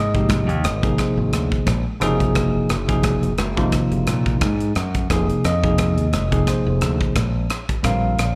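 Driving and intense, this short electric jazz fusion clip is cut from a longer piece and carries a swung sixteenth-note feel in 4/4. A bell-like tine electric piano sits up front with a clean, direct tone, voicing chords that move from Fm9 to Gbmaj9, then Fm7, and touch Bbadd9 at 7.8 seconds. Beneath it, a modern fingered electric bass sounds bright and direct in the low register, while a crisp, polished drum kit enters at 0.1 seconds with a punchy kick, hi-hat and rim click in an airy studio room. Very quiet, high-tuned congas with a thin skin and hard hands join at 0.3 seconds, adding a small acoustic glint in the background. The whole performance comes across like a live gig heard through the venue's PA, with club reverb around the sound.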